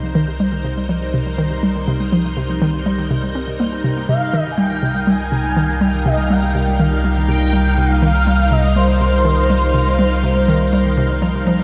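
A straight 4/4 pulse drives this hypnotic, cosmic slice of sequencer-driven space music, where a hollow, bouncy square-wave pluck riff, detuned and coloured by chorus, cassette-tape grit, tape echo and a filter sweep, cycles over a single Cm7 chord. Lush, vintage string-machine chords with phaser and ensemble chorus fade in alongside a deep, round sine sub bass, while an airy, wind-like noise texture breathes darkly in the background. At 4.1 s a smooth, nasal synth lead with vibrato enters with the melody, and the whole mix sits in a wet spring reverb heavy with echo.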